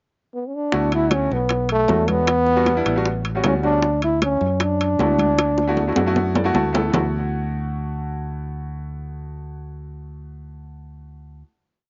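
Sophisticated and lively, this short Afro-Cuban jazz piece sets a mellow trombone melody with light vibrato and scooped notes over clear, syncopated piano stabs, a warm tumbao electric bass, and close, dry percussion of low-tuned bongos, bright congas with slapback echo and ringing metal-shell timbales, leading to a drum fill and piano fill before the percussion stops at 7.0 seconds and the piano and bass hold a final chord to 11.4 seconds.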